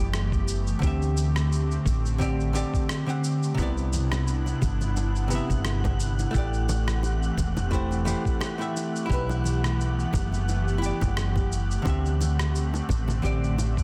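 A dense, heavily limited modern mix with light digital ambience carries this blissful sunset chillout excerpt, where a dark, clean archtop guitar with tape echo and shimmer reverb and a breathy, chorused pad hold the chords over a round, punchy fretless bass up front, a gritty, sampler-style rim click and cabasa, and a thumpy kick in the background, with very quiet soft-handed bongos and congas entering at 3.6 s and a faint wind-like tuned noise texture at 3.9 s.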